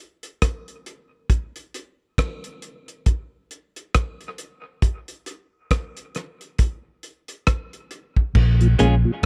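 A slow, swung 68 BPM groove in 4/4 opens this meditative, hypnotic dub reggae excerpt in Bb minor, with a cloth-damped, thuddy drum kit playing alone as a break from 0.2 seconds: tight kick, rim click, hi-hat and dark crash cymbal sit up front with a rolled-off top. At 8.4 seconds the harmony settles on Bbm7 as a round, foam-muted fingered electric bass arrives up front, soon joined by a mellow tonewheel organ with chorus vibrato, key click and a slow rotary speaker, and a brief clean, picked, compressed electric guitar part trailed by dub echo. The close, dry 1970s-style studio sound and small room ambience give the track an intimate character.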